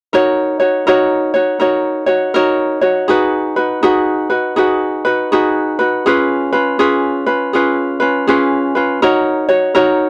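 The sound is dry and close, with light reverb and a 1970s-style studio character that keeps the ukulele up front. This sunny, relaxed Hawaiian excerpt moves at an easy 81 BPM in 4/4, with eighth notes swung at 63%. A lone acoustic ukulele carries the accompaniment from 0.1 to 10.1 seconds, fingerpicked with a warm, light touch between C#4 and C#5. The harmony sits in F# major, opening on F#6, moving through G#m7 and C#7, and returning to F#6 at 9.0 seconds. It feels like a gentle, unhurried slice of a longer piece.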